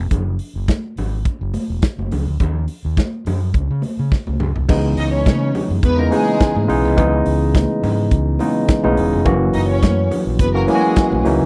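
A dry, close 1970s-style studio sound frames this sultry, danceable disco excerpt, with an overdriven, amped fingered electric bass and a modern studio drum kit with bright cymbals, a medium-tuned snare and a punchy kick sitting up front, while high-tuned, ringing congas played with soft hands stay distant in the background. After a drum fill ending at 4.7 seconds, a worn, slightly out-of-tune tine electric piano joins through its built-in speakers. At 5.0 seconds a lush, bowed string section with expressive vibrato enters from a distance over chords moving from C#m9 to F#7.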